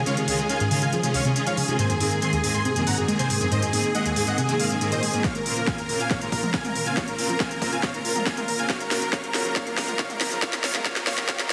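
Uplifting trance at 139 BPM in a straight 4/4, this euphoric, soaring excerpt is a build-up cut from a longer piece, moving through Dbadd9, Abadd9, Bbmadd9 and Gbmaj7. A huge, thick supersaw lead carries the melody up front, its detuned sawtooth layers sitting over a sub octave with vibrato, digital delay and sidechain pumping. Beneath it, a clear, focused studio string section holds bowed chords with vibrato, while a lush, full-bodied unison pluck spins wave-folded arpeggios through its own delay, both breathing with the same pumping. An up-front techno kit with a cracking snare, smooth hats and toms plays throughout and drives a drum fill from 5.2 seconds, where a punchy electronic kick also enters, and a very quiet riser creeps in at 9.8 seconds. A moderate digital room reverb and a dense, heavily limited modern master give the sound a polished, tightly packed sheen.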